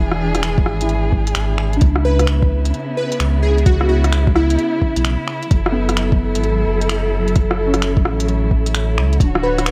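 Future garage in F# minor at 130 BPM, this short excerpt from a longer piece feels rainy and ghostly, its 4/4 groove swung on the sixteenths. A deep, round sine sub bass sits up front beneath a rich, bowed chamber string section holding sustained chords with vibrato, both pumping against the sidechain as the harmony moves from E7 through C#m7 and F#m7 to Dmaj7. In the background, a felt-muted upright piano plays soft, boxy accompaniment with audible action noise, coloured by 12-bit sampler grit and tape echo. An organic electronic kit of finger snaps, smooth hi-hats and rim clicks comes in at 0.1 seconds, and an overdriven soft kick joins at 0.6 seconds, both roughened by sampler grit. A punchy, catchy unison lead of detuned sawtooth and sine with a noise layer and filter pluck carries the melody from 2.0 to 5.0 seconds, then reappears briefly at 9.4 seconds, treated with analog chorus and delay over a light reverb.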